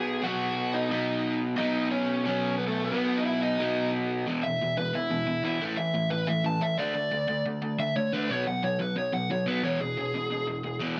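A bright, crunchy, double-tracked guitar riff and a raw garage guitar melody, fed through overdrive and digital delay, open this energetic, rebellious punk piece together over a B chord, both picked and up front in a half-time feel. At 4.3 seconds the straight 4/4 pulse at 179 BPM takes over for an overdriven electric guitar solo, moving through E5, A5, D5 and B5 before arriving on E in E major. Moderate studio reverb surrounds a dense, heavily limited modern master.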